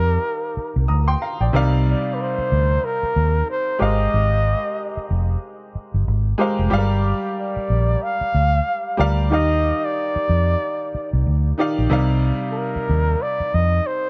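Flugelhorn, grand piano and electric bass all sound together from the opening moment of this short cut from a longer piece, a lush 1970s-style soul groove at 92 BPM in C minor with a gently swung sixteenth-note feel. The flugelhorn carries the melody between A4 and F5, breathy and whispered with a soft attack, mellow vibrato and an intimate, pop-style solo voice. Beneath it the grand piano supplies clear, slightly worn accompaniment spanning C3 to Eb6, while the foam-muted vintage electric bass sits round and punchy up front in the mix, stopping at 13.8 seconds just before the others finish at 14.1. The harmony drifts through rich extended chords, opening on Ebmaj9 and moving through Cm11, Abmaj13 and Gm7 before returning to Ebmaj9 and Cm11. A small room reverb and a dark, warm production give the whole passage a silky, cinematic mood.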